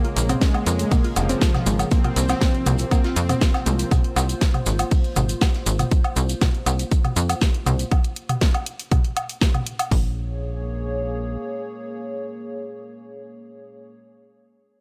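Melodic techno at 120 BPM in Bb minor, this dark, dramatic excerpt opens on a drop built over Bbm7 and Fsus4, with sidechain pumping on most of the synths. A soft, smooth supersaw melody, a warbling lo-fi pluck playing arpeggios through chorus and digital delay, and very quiet, brassy synth stabs all sound together in the first 3.9 seconds before falling away. Two layered house kits drive the groove, one with a punchy kick and the other with a cracking snare, toms and woodblock, both tape-warm and up front, joined by a very quiet acoustic indie kit and grainy, mellow maracas in the background. A tight, nasal sequencer bass with a fast filter pluck pushes hard from 0.2 to 11.4 seconds. Beneath it all, a deep, moody analog pad with a slow attack and sub octave holds sustained chords through to 13.9 seconds, carrying the closing section on Bbm7 in a dry mix with little reverb.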